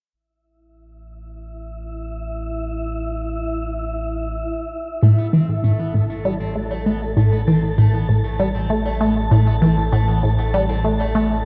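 A squelchy, resonant blip pluck carries the riff up front from 5.0 seconds, run through phaser and delay, alongside a twangy, slightly broken-up electric guitar playing delayed arpeggios in this expansive, cosmic piece of ambient, sequencer-driven space music in A minor at 98 BPM. Underneath, a round, dark analog bass fades in from the opening, joined at 1.6 seconds by an airy, breathy wind-like noise texture carrying its own reverb. The whole excerpt sits in a vast, echoing cathedral space, with the harmony moving from A5 to Amadd9 as the pluck and guitar enter.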